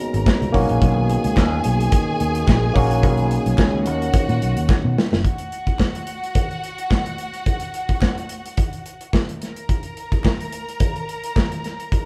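An up-front, dark-toned studio drum kit with a tight kick drives this danceable, sultry disco excerpt. At first it is joined by a punchy fingered electric bass, a barky, lightly overdriven tine electric piano playing a G#m11 chord, and a mellow French horn section holding sustained chords in the background. After a drum fill at 4.7 seconds, the bass, piano and horns stop around 5.2 seconds, leaving the drums, a distant, lush bowed string section carrying a second line, and faint, hollow vintage handclaps, all heard as a band playing live in one room with light reverb.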